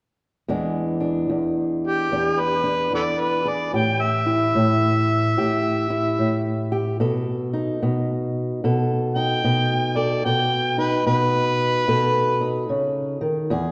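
An overdriven, gritty harmonica carries the melody up front from 1.9 seconds, its amplified tone marked by scooped notes, light vibrato and tongue slaps in a jazz-inflected solo. Beneath it, a fingerpicked old ladder-braced acoustic guitar with dark, woody, boxy old strings lays down a swung accompaniment over E7, A5 and B7 in this rollicking, laid-back country blues fragment. A lush church-like reverb surrounds the pair, and the guitar rings on to 13.7 seconds after the harmonica stops.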